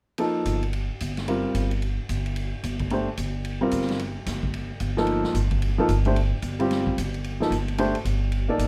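A dark production with light reverb frames this brief, spiritual and hypnotic modal jazz fragment in C dorian, swinging at 221 BPM over a single C7sus4, where a clear, up-front baby grand piano comps from F3 to D5, a big-band drum kit with a boomy kick and medium-tuned snare rides its hi-hat and ride cymbal in a natural big-room sound, and a woody, thumpy pizzicato upright bass on gut strings sits on G1 from 0.5 seconds.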